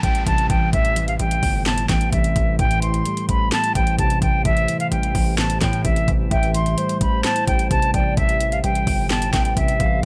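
Light reverb and a digital ambience lend a misty sheen to this brooding, melancholic trap excerpt, which moves in a half-time feel at 129 BPM in A minor. Up front, the trap drum kit delivers a knocking kick, sharp snare, metallic hi-hats and handclaps, while a distorted 808-style bass lands heavy, saturated and aggressive beneath it. Muted, felt-like synth keys give a dark, intimate accompaniment through chorus and a low-pass filter, and a deep ambient pad holds moody sustained chords on Am7 in the background. An airy silver concert flute carries the melody up front with vibrato, its tone softened by a low-pass filter and trailed by digital delay. A downlifter sounds faintly in the background until 2.6 seconds, when round, brassy synth stabs first appear, and at 6.3 seconds they return as a hollow, woody clarinet-like synth lead enters with a second line.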